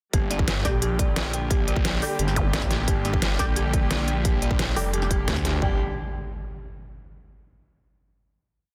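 A growling FM bass stands out, cutting in up front with thick, chopped phrases at 2.2 seconds and again at 5.3 seconds over a swirling, saturated detuned saw bass that holds the low end with phaser and sidechain pumping. This is a complete piece of dark, aggressive technical drum and bass in G minor at 175 BPM, built almost entirely around a drop that runs from 0.1 to 5.6 seconds on a G minor chord. A punchy, tape-tinged electronic kick drives a broken-beat pattern beside a tight dubstep kit of deep snares and crisp closed and open hats, while a zap marks the midpoint and an impact lands at the close. Above, an eerie, inharmonic synth bell repeats an eight-step arpeggio through chorus, phaser and digital delay, and muted, mellow dub chord stabs echo sparsely in the background with a filter pluck and power voicing. A distant, earthy chamber string section sustains rich bowed chords with light vibrato, pumping with the sidechain, before the piece resolves onto a final G5 chord from 5.6 to 7.0 seconds. 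The mix is dense and heavily limited, with light reverb.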